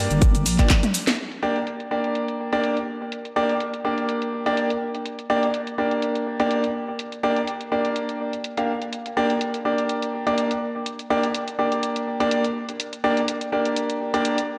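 Bright grand piano stabs with audible action noise open this bouncy, gritty bass house excerpt in G minor at 124 BPM with a swung 16th feel, over a dark, nasal vowel-sweep wobble bass with chorus and a tight, up-front electronic kick, both of which drop out at 0.8 s, while a garage drum kit with cracking snare, warm low-passed hats, handclaps, shaker and toms plays a fill at 0.7 s and carries on with the pumping piano through a dreamy, reverb-soaked hall.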